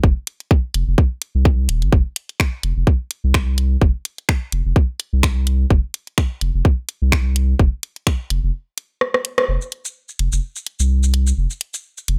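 Lightly reverberant and up-front, this quirky, sparse minimal techno fragment in a swung 4/4 pairs a deep, thick, saturated sub bass with sidechain pumping, a tight, overdriven electronic kick that drops out at 8.2 seconds, and an overdriven garage kit of finger snaps, hi-hat, rim click and shaker, with a break at 8.5 seconds and a drum fill and band accent leading into a new section at 9.5 seconds.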